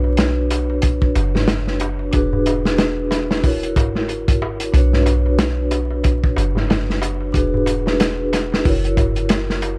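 Dark and cinematic, this trip hop excerpt rides a swung groove as a mellow, ringing vibraphone with soft mallets sits up front, its tremolo and tape echo hovering over chords moving from Bmadd9 through E7 to F#7. A soft, round 808-style bass gives deep sine tones that decay beneath a crisp metal-shell darbuka, while a crunchy breakbeat kit of gritty, saturated hi-hat, tight kick and medium-tuned snare enters at 0.2 s with a rolled-off top. Studio reverb and worn cassette tape color the sound with vinyl crackle and warbly pitch drift.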